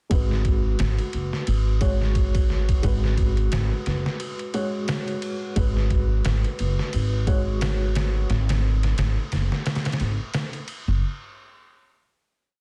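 A woody, growly upright bass anchors this short, smoky trip hop piece, playing a pizzicato dub-style line in G# minor at 88 BPM with a swung 16th-note feel over a single G#m7 chord. A gritty, pitched-down sampler drum kit sits up front with the bass, running a looped, edited breakbeat with a thumpy kick, medium-tuned snare and ride cymbal. A felt-muted upright piano adds mellow, intimate held chords in a spread voicing with syncopated pushes, coloured by tremolo, tape echo and a low-pass filter, until it drops out at 8.3 s, leaving bass and drums to carry the dry, dark, heavily limited groove to the end at 11.0 s.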